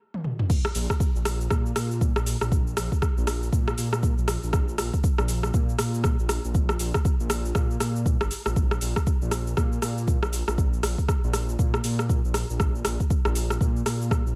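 This hypnotic, earthy afro house cut opens with a short drum fill from an overdriven deep house kit, its metallic hi-hats, shaker, rim clicks, toms and crash sitting up front with the roomy character of a large space. At 0.5 s the drop lands on a deep, tape-warm electronic kick, and at 0.8 s a dark, detuned sawtooth bass enters, rumbling and beating with a sidechain pump. The swung groove stays dry and close on a steady four-beat pulse.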